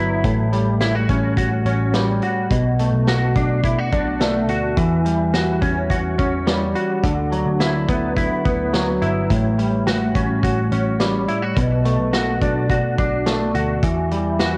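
Haunting and hazy, this dream pop excerpt sets a clean, hollow-bodied semi-hollow electric guitar up front, its fingered arpeggios washed in ensemble chorus and tape echo, over a dark, round, foam-muted picked bass and a gritty, saturated vintage drum kit of hi-hat, tight kick and snare with a rolled-off top, all in a lightly reverberant cassette home recording that cycles through chords such as A6, Bm7 and Em69.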